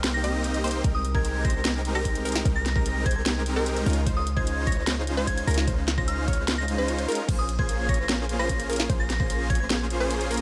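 Light reverb and a cassette-tape tint on the chords color this bright, playful future bass piece. It runs at 149 BPM in 4/4 with a half-time feel in Ab major, and the chords move from Cm7 through Abmaj9/C and Dbmaj9 to Bbm9. Huge, lush supersaw chords sit up front with detuned sawtooth unison and sustained body, all pumping against the sidechain. A punchy, detuned pluck plays arpeggios from the background through delay. A soft FM synth bell carries a pure, gentle melody high above, colored by chorus and delay, while a deep, boomy 808-style bass with a sine core and noise layer anchors the low end. A trap kit with a sharp snare, metallic hats and crash cymbal drives the groove, and a layered, knocking electronic kick joins at 0.8 seconds and drops out at 9.6 seconds.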